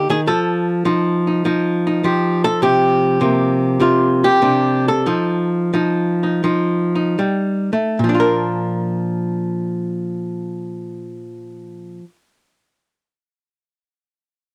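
Solo jazz in Bb major with a relaxed, playful swing at 71-102 BPM, this short excerpt features a lone miked and amplified archtop guitar, dark, clean and compressed with a hollow-body tone, picked and placed up front over F9 and C9sus4 chords as the tempo slows between 2.6 and 8.0 seconds before settling on Bb, all captured in a dry, close 1970s-style studio sound with light reverb.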